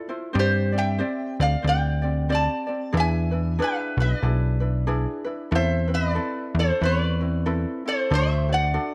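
A bright, nasal metal-body resonator slide guitar carries the melody up front over gently fingerpicked, mellow ukulele in this dreamy, languid Hawaiian piece at 93 BPM with a lazy swing, joined at 0.4 s by a punchy, funky analog bass whose fast-attack sawtooth and pulse-wave plucks decay beneath a Gsus4, E7, Amadd9/E and D7 progression, all set in a dark production with moderate echo-chamber reverb and small-room ambience.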